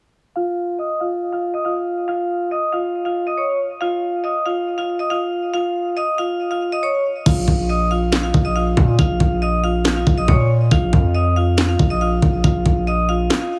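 A metallic, ringing vibraphone played with medium hard mallets opens this menacing half-time trap excerpt at 0.4 seconds, its melody passing through a low-pass filter sweep and a digital delay over a rootless Dbadd9/F chord. At 7.3 seconds the hard-hitting second section arrives: an electronic trap kit with a knocking kick, a sharp snare, handclaps and crash cymbal lands up front, joined by a heavy, aggressive 808-style bass whose sine tone carries a noise layer, a fast attack and a decaying tail, thickened with distortion on a Bb5 power chord. The vibraphone keeps its melody above the drums and bass, which sit slightly louder in the balance. A break at 13.3 seconds cuts the low end and beat before the piece is clipped from the longer track. The sound is dry and heavily compressed, with a radio-like, small-room character.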